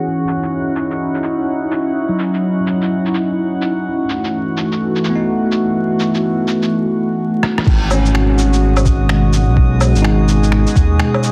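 Future garage at 126 BPM with a 62% swing on the sixteenths, this nocturnal, wistful excerpt opens on a warbling, nostalgic tape-like pad with chorus and reverb, a bell-like tine electric piano through phaser and tape echo, and a glassy harmonics texture of drifting overtones, all under a filter sweep and vinyl crackle, while muffled, pitched-down lo-fi drums of finger snaps, rim clicks, shaker, woodblock and crash enter at 0.3 seconds, then after a fill at 7.4 seconds a thumpy kick and a deep, rumbling detuned saw bass arrive at 7.7 seconds, as the chords move from C#madd9 and F#m7 to G#m7.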